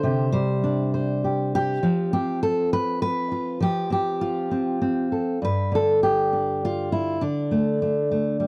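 Peaceful and warm, this short folk excerpt features a solo fingerpicked steel-string acoustic guitar in G mixolydian, moving at 101 BPM in a straight 3/4. The dreadnought's dark, full-bodied tone sits up front in a dry, close 1970s-style studio sound with light reverb, and finger squeaks give it an intimate, handmade quality. Its first passage drifts between Csus2 and Fadd9 before settling at 5.4 seconds onto G5 and D5 chords.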